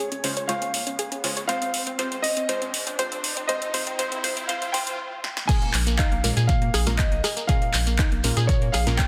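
Set in a moderate, lush hall reverb and a dense, heavily limited modern master, this dreamy, bittersweet progressive house excerpt opens with a build-up: a dark, mellow grand piano melody with digital delay floats over a nasal, chorused and phased analog pluck arpeggio under a filter sweep, detuned unison pluck stabs with 12-bit sampler grit and tape echo, and an overdriven deep house kit with punchy snare and metallic hats, while a riser hovers in the background. After a brief stop and a drum fill at 5.2 seconds, the drop lands at 5.5 seconds, where an up-front overdriven kick and a grainy, band-limited shekere join. A round, wave-folded analog bass enters at 5.7 seconds, pumping with the sidechain alongside the plucks.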